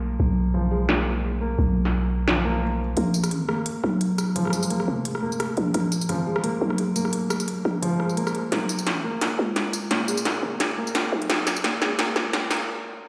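Half-time drum and bass at 173 BPM in Bb phrygian, dark and tense, cut from a longer piece: a felt-muted upright piano with audible action noise plays mellow arpeggios through 12-bit sampler grit, a low-pass filter sweep and digital delay over a buzzy, growling 808-style bass. An electronic industrial kit of clanging snare, crisp hi-hats, rim click and tambourine sits up front from 0.9 s, and a build-up from 3.0 s leads into a drum fill at 8.5 s and a brief break at 12.7 s, all set in a stone-room echo-chamber reverb.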